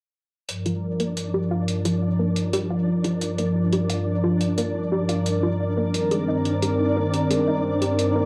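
Eerie and melancholic, this short IDM excerpt sets a smooth, detuned sawtooth pad with chorus up front on sustained chords moving from Gm7 to Abmaj9/G under a filter sweep, while a gritty, pitched-up hi-hat, a warbling, dark pluck arpeggio with analog delay and its own filter sweep, and a grainy, flickering granular texture entering at 0.9 seconds all sit in a wet room with the lo-fi tint of a cassette home recording.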